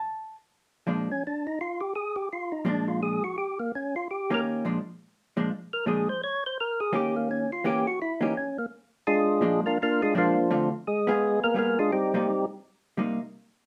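A brisk swung 4/4 drives this soulful jazz passage, cut from a longer piece, moving through a blues-style progression of dominant seventh chords with a diminished passing chord and a turnaround. A dark, clean, compressed hollow-body electric guitar comps up front from the start. A fat, lightly overdriven tonewheel organ with a percussive attack, vibrato and a slow rotary speaker takes the solo melody from 1.1 seconds, all set in a moderate club reverb.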